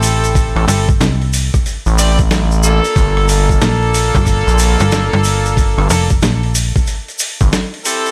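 Glitch hop excerpt at 92 BPM in G dorian with a funky, swaggering 16th-note swing, where a bright, punchy horn section fires tight stabs through 12-bit sampler grit, sidechain pumping and delay, an up-front FM slap bass with a snappy metallic attack drops out at 6.7 seconds, a nasal, wave-folded driven synth bass enters at 0.6 seconds, a thumpy pitched-down electronic kick and a tape-warm boom bap kit of hi-hat, rim click and medium-tuned snare hold the groove, and a grainy tube shaker sits in the background over Am7 moving to Gm7 in a dry mix.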